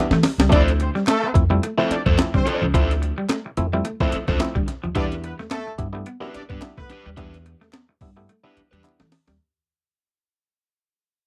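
A dry, close 1970s-style studio sound with light reverb frames this driving funk excerpt at 108 BPM in 4/4 with a lightly swung sixteenth feel, fading out throughout as stringy muted clav stabs sound from the very start and a gritty, pitched-up breakbeat kit with a thumpy kick opens with a fill and closes with another at 8.3 seconds. They are joined by a woody pizzicato upright bass, a bright semi-hollow guitar riff, an overdriven guitar accompaniment with spring reverb, a punchy horn section second line with vibrato and octave doubling from 0.5 to 7.0 seconds, and a very quiet hollow group handclap, over chords moving from Em7 to Dm7 and back to Em7.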